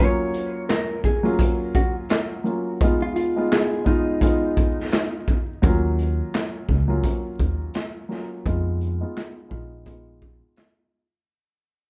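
A swung, sixteenth-note boom-bap groove drives this moody hip-hop clip, its gritty, saturated garage kit of boomy kick, medium-tuned snare, handclaps, hi-hat and shaker pumping in a small room. A dark, woody upright piano carries the seventh chords while a clean, compressed electric guitar plays a mellow, tape-echoed melody until 5.1 seconds. A thumpy, gut-strung pizzicato upright bass enters at 5.6 seconds as the piano takes a filter sweep and the music fades out, all in a rough, dry home-demo mix dusted with vinyl crackle.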